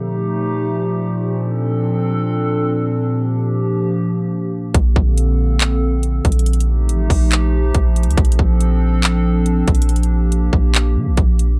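A warbly, nostalgic tape-like pad with chorus, reverb and sidechain pumping floats alone through blissful, lo-fi chords such as F9/Bb and Gm7/Bb until a deep, dark sine 808 bass and a trap kit with a hard-clipped kick, metallic hats and handclaps arrive at 4.7 s, settling this atmospheric cloud-rap excerpt into a half-time groove at 140 BPM.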